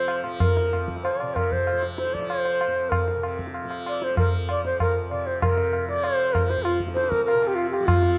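A dark, warm production places this short Hindustani classical excerpt in a wet recital hall, its reverb lingering for about 1.3 seconds. A pure bamboo bansuri sits up front and carries the melody between F4 and D5, its bright tone shaped by soft attacks and expressive vibrato. Beneath it, a softly plucked tanpura drone buzzes and shimmers low in the mix, spanning F2 to F3. The high-tuned tabla rings close and dry, also up front, entering at 0.1 seconds and keeping a straight 4/4 pulse around 193 BPM that gradually speeds up. The serene, meditative passage moves into a new section at 5.4 seconds before being cut off at 8.2 seconds.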